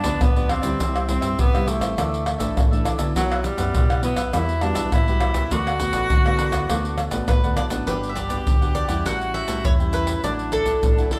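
A lively, playful samba-choro groove in a straight 4/4 is driven by an up-front percussion section of egg shaker, pandeiro, tamborim and a deep surdo, compressed and saturated, while a dark, round fingered electric bass sits underneath with a direct, amped tone. A breathy tenor saxophone opens with a jazz-style solo through the first 7.9 seconds, intimate and whispered, with soft attacks, scooped notes and vibrato. A fingerpicked nylon-string guitar with a classical touch and a crisp, picked cavaquinho set further back fill out the accompaniment under chords that move from G7 through C and Emadd9 toward Gmaj7 and A7. At 7.3 seconds a warm, woody mandolin with double strings takes up the melody, just before the music turns into a new section. The band sounds as if playing live together in one large studio, with a moderate reverb giving the room a natural depth, and the passage is cut from a longer piece.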